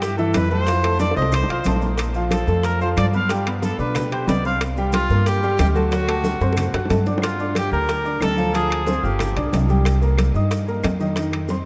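Bathed in a vast, echoing cathedral reverb, this driving, danceable salsa excerpt in G minor at 183 BPM carries a clear, distant trumpet melody with light vibrato over polished grand piano accompaniment and a thumpy, woody, pizzicato upright bass up front, while ringing congas and metal-shelled timbales sit in the background beside grainy maracas, tight, high-tuned bongos and dry claves tap very quietly, drum fills arrive at 1.0 and 6.4 seconds, and the trumpet drops out at 9.4 seconds.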